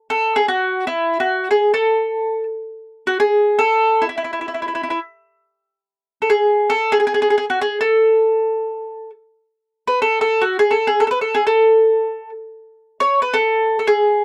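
A dry, close recording with a 1970s studio character places a lone acoustic mandolin up front, touched by light reverb. In this short Persian modal ensemble excerpt, the mandolin plays solo from 0.1 to 14.2 seconds, its picked double strings giving a mellow, round tone across a compact range from E4 to C#5. The mood is passionate and festive, tuned to A4 = 444 Hz.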